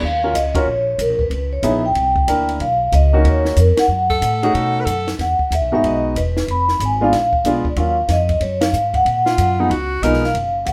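A moderate studio reverb surrounds this short jazz clip, and its moody, late-night feel suits the small-group swing and bop style at 186 BPM in 4/4, with a swung eighth-note pulse in Eb minor. The vibraphone carries the melody from 0.1 seconds, played with soft mallets and a fast motor vibrato, its metallic, ringing tone mellow yet boxy and placed up front. A warm grand piano supplies accompaniment close to the listener, while the upright bass, plucked pizzicato on steel strings, sounds woody and thumpy at the front of the mix. The compact cocktail drum kit stays dry and natural, with dark cymbals, a high-tuned snare and a punchy kick across hi-hat and ride. A clear, close-miked tenor saxophone adds a brief second line with soft attack and vibrato at 4.1 seconds and again at 9.3 seconds, over shifting harmony that moves from Ebm9 through Bmaj7 and Bb7b9 before landing on Db7, with band accents punctuating the phrase.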